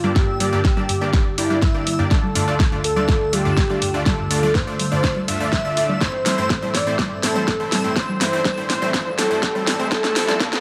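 Progressive house at 123 BPM with a bittersweet, dreamy mood, this build-up excerpt moves through Gm, Dm, Am and Fmaj7 as a velvety, detuned sawtooth lead with vibrato carries the melody over a smooth analog pad, a dark, wave-folded pluck playing arpeggios and bright supersaw stabs, each breathing with sidechain pumping and with tape echo on the lead, pluck and stabs. A punchy, up-front kick and a pop kit with a fat snare and warm hats drive a drum fill throughout, while filter sweeps move across the pluck and pad and a reversed, granular texture glimmers high in the background. A very quiet riser enters at 8.1 s, all set in a moderate digital room reverb.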